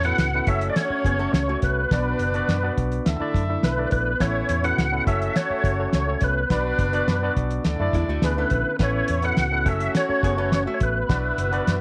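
An up-front tonewheel organ carries the melody from the first moment, its fat, lightly overdriven tone colored by chorus vibrato, key click and a slow rotary speaker, over an uptempo 1960s-style soul groove at 104 BPM in a straight 4/4. Beneath it, a cloth-damped drum kit with a thuddy, fat snare and tight kick sits close and dry, while a foam-muted fingered electric bass adds a round, punchy low end. A barky tine electric piano, bright and lightly overdriven through a combo amp, fills out the accompaniment, and a horn section with light vibrato and octave doubling hovers softly in the background alongside a very quiet, metallic, ringing vibraphone with slow motor vibrato. A clean, compressed hollow-body jazz guitar pops in with a brief riff at 1.1 seconds and returns at 7.9 seconds to keep riffing until 11.1 seconds. The harmony cycles through F#m, Bm, Dsus2 and Aadd9 in a light small-room ambience, giving this danceable fragment of a longer piece a joyful lift.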